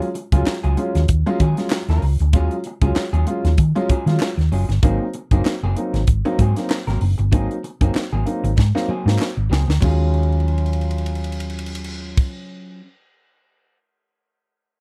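A sly, funky excerpt of funk at 96 BPM in Eb dorian, swung on the sixteenths, where a crisp fusion drum kit with a high-tuned snare and punchy kick sits up front beside a round, hollow-body fingered electric bass that enters at 0.3 seconds, while a slightly broken-up picked electric guitar, woody stabs from a dark upright piano with audible action noise, and distant group handclaps fill out a dry, close 1970s-style studio sound as the harmony moves from Ebm11 to Ab9 and back, with drum fills at 8.6 and 10.1 seconds.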